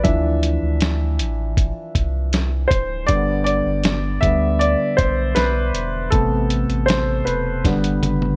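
Melancholic and full of longing, this short cut from a longer pop ballad moves at an unhurried, straight pace in 4/4. A concert grand piano sits up front and carries a solo through the whole 8.4 seconds, its tone warm with deep bass and long sustain as it moves through Dmadd9, G, Amadd9 and back to G. Beneath it, a round, sine-like sub bass holds the low end with a fast attack and a mellow, sustained body. A lo-fi, sampler-style drum kit, compressed and muffled, with a thumpy kick and medium-tuned snare, sounds re-recorded in a small room and also sits close to the listener. The drums close on a fill at 7.6 seconds, and the whole recording stays dry and intimate with little reverb.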